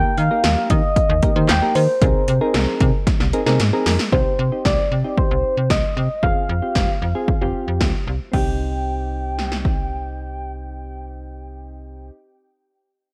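Synth-pop cut from a longer piece, driving yet melancholic, where a round, gentle FM lead with chorus and vibrato carries the melody over mellow, chorused electric-piano-like keys and a snappy, metallic slap-like FM bass. Up-front 80s electronic pad drums bring a punchy kick, gated snare, metallic hi-hats, handclaps and crash, with a fill from 3.1 to 4.1 seconds, and they drop out at 9.8 seconds while the other parts continue. Light reverb and digital ambience surround the mix, and a worn cassette-tape quality adds a warbly pitch drift.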